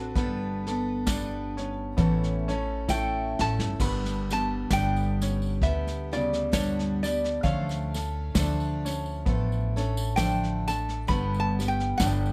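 This short cut from a longer acoustic folk piece opens on a lap resonator guitar carrying the melody with a slide and fingerpicks, its tone metallic and nasal. For the first 3.8 seconds the steel bar work stands out as a brief solo over a jumbo steel-string guitar, picked and full-bodied with audible finger squeak, an upright piano's clear, short-sustained arpeggios, and a pizzicato upright bass with a thumpy, gut-string sound. A vintage kit played with brushes enters almost at once, its dark cymbals, medium-tuned snare and punchy kick warm with a rolled-off top end, and a jingly tambourine joins at 1.1 seconds. A drum fill leads into a new section at 3.8 seconds, where the harmony moves from G to D minor and back to G after the opening Gadd9 and A chords. The slow, lightly swung pulse gives the music a pastoral, nostalgic mood. The close, detailed recording carries little reverb, keeping the bass and acoustic guitar up front.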